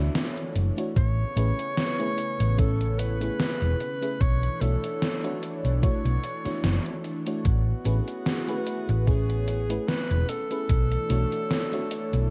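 A breathy, mellow alto saxophone with light vibrato and scooped notes carries the melody through tape echo in this faded, nostalgic vaporwave excerpt at 74 BPM in A major, drifting over Bm11 and Amaj9 chords voiced by a dreamy, detuned FM electric piano with lush chorus and a thick sawtooth unison pad in the background, while a round, dark hollow-body bass sits up front, a gated 80s drum machine adds cabasa, hi-hat and a gated-reverb snare from 0.2 seconds, and a thumpy electronic kick joins at 1.0 seconds, all with a dry, cassette-tape sound.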